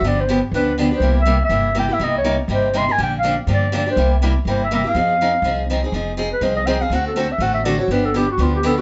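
Swinging at 244 BPM, this bittersweet slice of acoustic jazz manouche has a boxy, bright picked archtop guitar up front and a woody, thumpy pizzicato upright bass beneath a breathy, intimate clarinet melody with light vibrato and scooped notes that becomes a solo at 5.9 seconds, all in a moderately reverberant room with softened highs.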